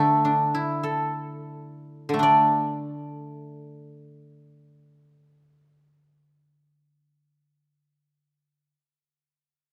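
A light reverb surrounds this short cut from a longer Chinese traditional piece, where a solo guzheng sits up front with a silvery, ringing tone, plucked with fingerpicks across a range from D3 to E5. The mood is elegant and serene, moving in a free, rubato 2/4 at roughly 40-57 BPM. The opening phrase slows down over its first 2.2 seconds before a second passage unfolds until 7.9 seconds.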